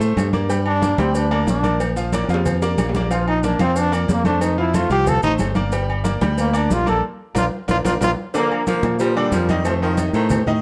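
A dark, warm studio sound with moderate reverb frames this danceable, joyful salsa excerpt in Bb major at 184 BPM, where a brilliant, vibrato-laden solo trombone with plate reverb leads up front from 0.7 seconds over a bright grand piano with audible action noise, a round, punchy fingered electric bass, ringing congas, grainy maracas, very quiet high-tuned cowbell and bongos, and vintage metal-shell timbales and agogo bells, with drum fills and a band accent before a breathy baritone saxophone at 8.3 seconds and a mellow, distant trombone section at 8.4 seconds take over, moving toward an F7 chord.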